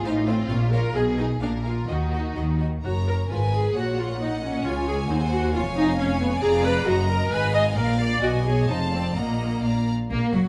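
An up-front viola section carries smooth, even accompaniment through this dramatic, stormy fragment of a quick classical-period movement for string orchestra, in 2/4 at 125-136 BPM in F# major. Above it, a close violin section sings the rich melody with vibrato, while a clear, distant second violin section traces a focused inner line. Cellos and an expressive double bass section anchor the bass beneath, all within a large studio reverb, and the music shifts from its opening section into a new one at 2.8 seconds.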